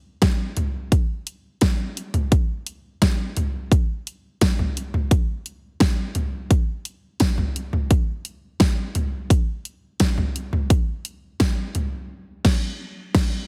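A layered electronic pop drum kit opens at 0.2 s at a straight 86 BPM in 4/4, its punchy kick, fat snare, hi-hat, toms and crash cymbal sitting up front in this bittersweet, driving excerpt. A jingly, band-limited acoustic tambourine joins very quietly from 3.0 to 11.6 s, and a band accent lands at 12.1 s. The whole cut has light reverb and a heavily compressed, radio-like sound.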